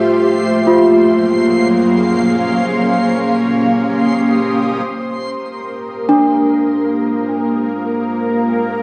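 A weightless, peaceful ambient passage in free time opens with an ethereal, airy pad holding sustained chords from Gbmaj9 through Eb7 to Ab6 under a faint, reversed, dreamy texture that swells until 4.9 s, while a delicate, bell-like celesta plays arpeggios through tape echo and a tense, string-like drone with phaser and vibrato enters at 5.6 s, all set in a wet scoring-stage reverb with a soft, dark top end in this excerpt from a longer piece.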